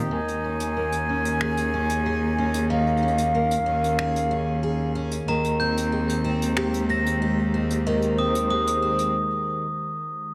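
Playful, warm folktronica at 93 BPM in Eb mixolydian, where a shimmering, octave-doubled twelve-string acoustic guitar picks filtered, delayed arpeggios up front over a clear bowed cello bass and a vintage, warbling analog pad carrying chorus, sampler grit and a filter sweep, while a distant brushed kit with finger snaps and hi-hat keeps a straight 4/4, an airy flute carries the melody through echoing delay until 4.9 s, a bright, bell-like glockenspiel adds a sparkling second line from 5.3 s, and a break arrives at 9.2 s, all of it set in moderate plate reverb.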